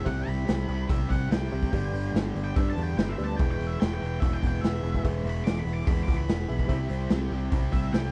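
Swaggering and confident, this short classic rock excerpt drives at 145 BPM in a straight 4/4, with an octave-fuzz lead guitar soloing throughout in a dark, distorted voice over chords moving from C to G to E and back to C. The raw garage drum kit sits up front with a boomy kick, medium-tuned snare, hi-hat and gritty, saturated 12-bit sampler crunch, while a growly picked electric bass pushes close beside it. A tight distorted guitar plays a riff alongside them. Further back, a hollow-bodied overdriven semi-hollow guitar plays its own riff, a reedy electric piano with tremolo comps until 7.4 seconds, and a shouting tonewheel organ with slow rotary swirl is barely audible, all in a dry, close-sounding space.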